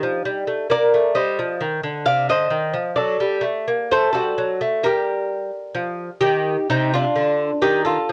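A solo lute, bright and delicate with nylon and double strings, some of them octave-doubled, is fingerpicked up front in this flowing, introspective baroque-style dance, taken from a longer classical piece. At 65 BPM in 4/4 with a rubato feel, it moves through Cm, D/F#, Gm and back to Cm across about 8.1 seconds, ranging from C3 to F5. It was recorded at home on cassette tape, with light reverb.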